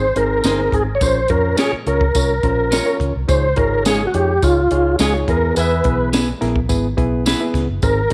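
A straight 4/4 groove at 106 BPM drives this short, uptempo 1960s-style soul excerpt, and its mood is uplifting and joyful. A smooth, up-front tonewheel organ carries the melody from the first beat, its chorus vibrato and key click heard through a stopped rotary speaker. A barky, reedy electric piano, lightly overdriven through its built-in speakers, supplies accompaniment, while a round, foam-muted vintage bass plays fingered lines underneath. The compact cocktail kit enters at 0.2 seconds with a high-tuned snare, punchy kick and hi-hat, its top rolled off, and a jingly tambourine and a dark, clean picked guitar stabbing with subtle chorus join at 0.4 seconds. A mellow, distant horn section slips in briefly from 5.6 seconds as the band accents together over chords moving from Ab through Bbm and Dbadd9 to E, all set in light reverb and small room ambience.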